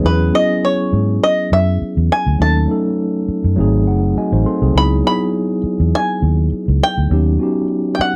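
Lush 1970s-style soul at 102 BPM with a gentle sixteenth-note swing and a smooth, warm mood, cut from a longer piece. A dark, round, foam-muted fingered electric bass sits beneath a mellow, clean tine electric piano that moves through E6, D#m7b5, G#7b9, C#m11 and D#7alt and adds a fill at 3.6 seconds, while a twangy, percussive bluegrass banjo played with fingerpicks carries the melody. The dry, close studio sound keeps all three parts up front.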